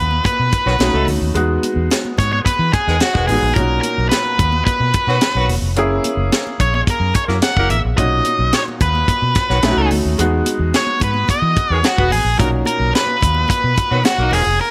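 An octave-fuzz lead guitar, dark, distorted and picked, carries the melody up front from the first moment. Beneath it sit a clear, slightly worn grand piano with subtle chorus and a round, punchy, foam-muted electric bass, in this glossy, urban 1980s jazz-funk pop excerpt at 109 BPM in B major. Very quiet, bright, damped congas come in at 0.1 s, a tight funk drum kit with a high-tuned snare and rolled-off top joins at 0.2 s, and a mellow, distant horn section with light vibrato and octave doubling enters at 0.6 s as a second line, all over Bmaj7, B9, Emaj9 and F#7 chords in a small room with light reverb.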